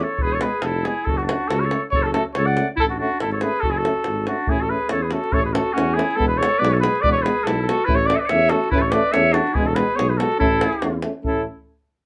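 A clear flugelhorn with light vibrato leads this wild, virtuosic Balkan brass band piece from the start, with a bright clarinet on the second line and a soft-attack French horn and distant, roomy trombone holding accompaniment in the background. From 0.2 s a close-miked, mellow tuba carries the bass and a tight davul drives the swung 2/4 at 142 BPM, moving from F# minor to A major at 4.5 s. The flugelhorn and clarinet have a vintage tone, and all five wind parts are played in a classical style, set in a small room with moderate reverb.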